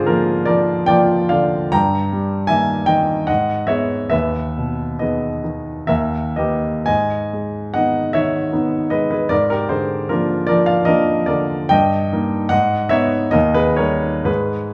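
In a rubato 3/4 that drifts between 57 and 80 BPM, this romantic classical nocturne for solo piano moves with a mournful, yearning sway in G# minor. A baby grand piano carries the whole passage from 0.0 to 14.7 s, ranging from D#2 up to A#5 with a warm, natural tone and short sustain, placed up front. A large studio reverb with a 1.1-second decay surrounds the instrument, giving the notes a wet halo of room. The harmony circles restlessly around the home key, moving from A#7 over a G# bass through D# over G to G# minor, then leaning on D# before settling back. Near the close it returns to the A#7 over G# at 9.3 s and ends on an unresolved D#7 at 13.3 s, leaving the phrase suspended as it is cut from a longer piece.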